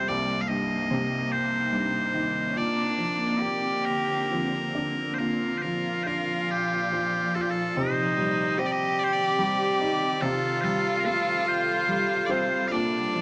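A moderate studio reverb surrounds this short 13.2-second excerpt from a longer Celtic slow air, in C dorian at a rubato 45-50 BPM in 6/8, with a longing, haunting mood. Up front, loud bagpipes carry the melody with a piercing, continuous tone, while a single bowed cello, rich and smooth with vibrato, sings an even second line close beside them. Beneath, an intimate upright piano adds woody, slightly detuned accompaniment with short sustain and audible action noise. A shimmering ambient pad with slow attack and long release holds ethereal, granular chords, colored by an octave-up shimmer, chorus and built-in reverb. The harmony moves from Cm7 through Bbadd9 and Bb to Cmadd9, settling on Fadd9/C at 10.2 seconds.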